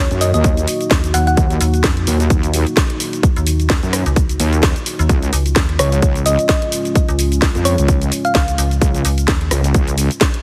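A thumb-piano-like synth pluck with a round, tine-like FM tone opens this bouncy, aggressive bass house excerpt at 129 BPM in Eb minor, over a deep, nasal analog pad and a metallic FM bass that pump with the sidechain. A saturated, detuned wobble bass sits up front beside a punchy electronic kick, while a house kit of hi-hat, rim click, shaker and cracking snare rides a swung 16th-note groove. The chords move from Ebm to Db at 5.1 seconds, the pluck returns at 5.8 seconds with chorus and digital delay, and the whole mix has a heavily compressed, radio-like digital ambience.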